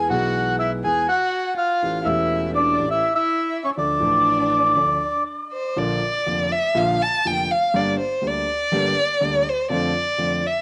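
A reedy, dark bandoneon opens this melancholic, tense tango fragment, carrying the melody with a tape echo. It is joined from the start by a single bowed violin on a second line and a concert grand piano on accompaniment, all three sitting up front. The violin sounds expressive and soft in attack, with vibrato and portamento, while the piano is intimate and vintage in character, with deep bass and audible action noise; both carry the color of cassette tape. The feel is rubato, and the harmony moves from E through A7 to Dm. Once the bandoneon falls away at 5.2 seconds, the violin takes a solo from 5.8 to 10.6 seconds over Bb, Gm and Dm7/F, with the smooth piano underneath. A moderate spring reverb and a small room give this home cassette recording a close, homespun air.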